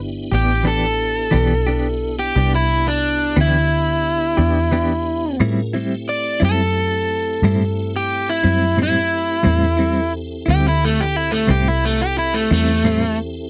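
In a slow, straight 12/8 pulse, this mournful, brooding blues excerpt carries a bright, crunchy overdriven guitar solo up front over a round, punchy muted bass, a clean compressed electric guitar shimmering with tremolo, and a piping tonewheel organ holding sustained chords through a slow rotary speaker with key click, all caught in a dry, close 1970s-style studio sound with light reverb as the harmony moves from Em7 to Am7 at 5.4 seconds.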